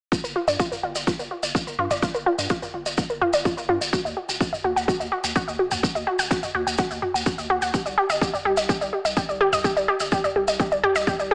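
Heard through a small-speaker sound with a moderate digital room reverb, this cinematic, hypnotic melodic techno excerpt is led by an up-front, detuned unison pluck playing bright arpeggios, pumped by sidechain, trailed by dub echo and shaped by a filter sweep across its full length. A punchy layered kick drives the pulse, while grainy, distant maracas and background electronic toms fill out the rhythm. Underneath, a round, dark analog bass pumps along through a Gm7, Ebm and Cmadd9 progression.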